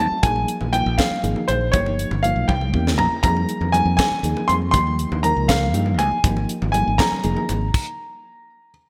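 A bright 1980s-style digital production with light small-room reverb frames this slick, intense electric jazz fusion excerpt in a straight-feeling 6/8. Up front, a clear grand piano carries the melody with a touch of delay and intimate, audible action noise, while a reedy, worn electric piano, slightly out of tune and heard through its built-in speakers, fills in chords with a fast tremolo. A growly, direct fingered electric bass sits prominently in the low end, and ringing, band-limited congas played with hard hands stay in the background. The dry, tight funk drum kit, with its high-tuned snare, tight kick, hi-hat, crash and toms treated with gated reverb, drives the groove and plays a fill from 2.5 to 3.2 seconds. The harmony moves through colourful chords such as Gm7b5, C7b9, Fm9 and Absus2 before a stop at 7.7 seconds, after which the drums carry on briefly to 7.9 seconds and the piano rings on to 8.7 seconds.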